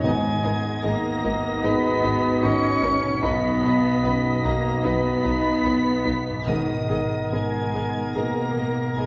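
A moving, longing fragment of cinematic film score opens with a lush, distant violin section singing the rubato melody high above a very quiet second violin line, while a silvery flute, a clear oboe and a mellow, roomy clarinet weave supporting lines; a dark, intimate baby grand piano with audible action noise and very quiet, expressive violas fill in the accompaniment, a vintage-toned French horn section holds sustained chords, and a ringing, fingerpicked harp adds very quiet arpeggios. Rich cellos and focused double basses carry the bass, calf-headed timpani strike briefly at 0.0 and 6.5 seconds, and a reverberant scoring-stage space sets the orchestra back in the room.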